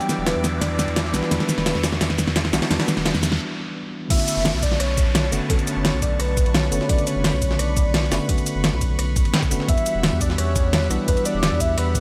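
Liquid drum and bass with a lush, soulful mood, this passage opens on a build-up in which a velvety, chorused synth lead carries the melody over a worn, slightly out-of-tune tine electric piano whose tone is shaped by a filter sweep and a digital delay. Beneath them a thick, detuned unison pad holds sustained chords with a slow attack and sidechain pumping, while a riser and downlifter sound alongside a drum fill. The layered pop kit brings its fat snare and crisp hats, and the gritty, pitched-up jungle kit sits in the background. A deep, saturated sine sub bass enters at 0.2 seconds, and after a short break the drop lands at 4.1 seconds as a compressed, thumpy electronic kick joins. The harmony moves from Em9 to Bm9 at the drop and returns to Em9 near the end. Tremolo and tape echo colour the dark lead, and light reverb with small room ambience on the drums keeps the sound close and tape-warm.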